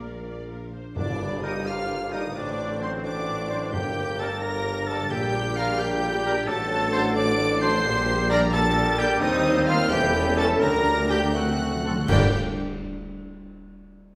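Heard in a reverberant hall, this dramatic, restless romantic orchestral passage in 6/8 with rubato has lush, vibrato-rich violins singing the melody over a softer second violin line and rich violas in accompaniment, while cellos, double basses and tuba carry the bass, mellow French horns and very quiet, clear trombones hold chords, distant trumpets add stabs, a ringing harp plays arpeggios, and a silvery flute, roomy oboe, mellow clarinet and vintage-toned bassoon join from 1.0 s, with timpani plus tam-tam, bright clash cymbals and bass drum marking accents at 1.0 s and 12.1 s.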